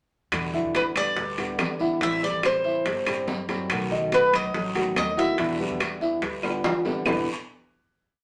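Sultry and nostalgic, this short Cuban son and guajira piece moves through a single section in a straight four-beat feel before settling on a final chord at 7.1 seconds. Up front, a picked Cuban tres with metallic double strings, some doubled at the octave, carries a motif-based melody of song phrases from 0.8 seconds. Beneath it, a dark, mellow baby grand plays an intimate piano montuno in octaves, its audible action noise lending a vintage touch, while a small, fingerpicked nylon-string guitar strums with muted slaps. A thumpy upright bass with gut strings plucks a syncopated figure over Em7, Am7 and B7 chords. The percussion sits in a small room: tight, high-tuned bongos play very quiet steady eighths with hand bell, ringing metal-shell timbales carry a shell pattern and bell, woody claves keep a two-bar time line in the background, a raspy guiro scrapes long and short strokes, and a drum fill arrives at 6.4 seconds. 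A wet studio reverb adds a brief tail.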